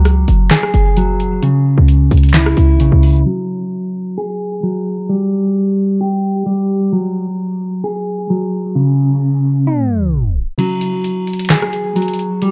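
Eerie and menacing, this half-time trap and hip hop excerpt runs at 131 BPM in 4/4, built on dark, clean arpeggios from a mellow, fingered electric guitar that plays throughout, softened by a low-pass filter and tape echo and cycling between F#sus2 and C#m. A punchy, tight 808-style bass with a sine body and a noise layer sits up front with the guitar, its fast attack decaying quickly before it drops out at 3.2 seconds. A booming analog drum machine brings a crisp snare, metallic hats, handclaps, rim clicks and a crash, with a short room on the snare, clap and hats. Once the drums fall away, a filter sweep shapes the middle passage, where a brief stretch with the chords dropping out deepens the unease, and a tape stop arrives at 9.7 seconds. The drums return at 10.6 seconds with the kick muted, joining the guitar in a dark production with a moderate recital hall reverb.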